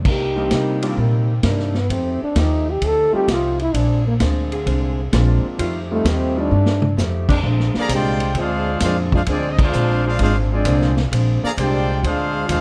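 Big band swing at 130 BPM in 4/4, this joyful, brassy clip from a longer piece opens with a mellow trombone solo carrying the melody over a swung groove, its light vibrato set in plate reverb. Underneath, a woody pizzicato upright bass sits up front, a vintage drum kit with dark cymbals and a punchy kick drives the time, and a boxy, picked archtop guitar plays quietly in the background. A concert grand piano with deep bass and a tight saxophone section holding sustained chords fill out the opening, as the harmony moves through Cm7, F9 and Bb9. A drum fill at 6.5 seconds leads into a settled Bb major passage where, at 7.8 seconds, a brilliant, loose trumpet section takes the melody with vibrato and plate reverb, backed by a clear trombone section on a second line. A band accent punctuates this brassy close before the clip is cut.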